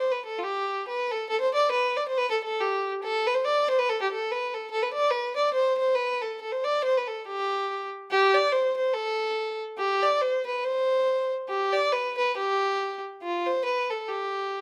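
The rhythm moves in a brisk 2/4 at 141 BPM, with a gentle swing on the eighth notes that gives this Celtic folk fragment a cheerful, rollicking bounce. A single bowed fiddle carries everything alone from 0.0 to 14.6 seconds, set in G mixolydian and tuned slightly low to A4 = 439 Hz. Its tone is dark and woody, with a smooth top and a light vibrato, and it sits up front in the sound. The line stays within a compact range from F4 to D5, playing through the opening strain before moving into a contrasting second strain at 8.1 seconds. A moderate studio reverb adds a modest sense of room around the lone player, and the recording is clearly cut from a longer piece.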